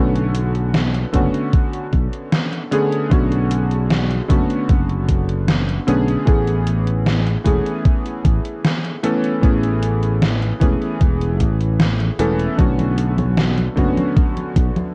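A straight 4/4 pulse at 76 BPM drives this woozy, dreamy vaporwave excerpt: a gated 80s digital drum machine plays congas, hi-hat and a gated-reverb snare, and a thumpy electronic kick joins at 1.1 s. A growly, punchy fretless electric bass sustains low notes beneath a clear, vintage electric grand piano with a clangy low end, chorused unisons, tape echo and short sustain, moving from Bm9 to Amaj9 and back, inside a dark cassette-tape production with light reverb.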